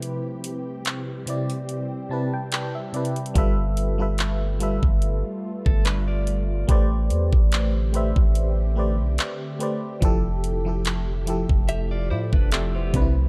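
A dry, dark mix with a faint mains hum sets a late-night, longing mood in this contemporary R&B fragment, cut from a longer piece. A warbling vintage FM electric piano with tremolo sits up front, carrying the accompaniment through a break that opens the passage and playing a fill from 1.7 seconds. Behind it, an ethereal, airy pad of detuned, wave-folded saws holds slow-blooming chords in the background, thickened by ensemble chorus and its own reverb and pumping against the beat. The electronic trap kit drives a lightly swung groove with a knocking kick, metallic hats and handclaps. At 3.4 seconds a deep, sine-like 808 bass arrives with long decaying notes. A clean, compressed electric guitar, recorded direct with tremolo, adds brief picked arpeggios at 5.7 seconds and again near the close, over chords moving from Cmaj7 through G13 and Am11 to Fmaj9.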